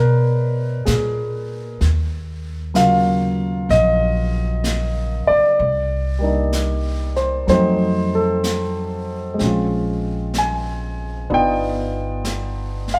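A slow swung 4/4 at 63 BPM carries this melancholic, smoky jazz ballad excerpt, where a dark, mellow concert grand with deep bass sits up front accompanying through rich chords such as E7#11, Ebm9, F7b9 and G7b13, a woody, thumpy pizzicato upright bass on gut strings holds the low end, and a natural-sounding brushed kit of snare and hi-hat enters at 0.9 s, sitting low in the mix, the band heard playing live together in a moderate large-studio reverb and tuned slightly high to A4 = 444 Hz.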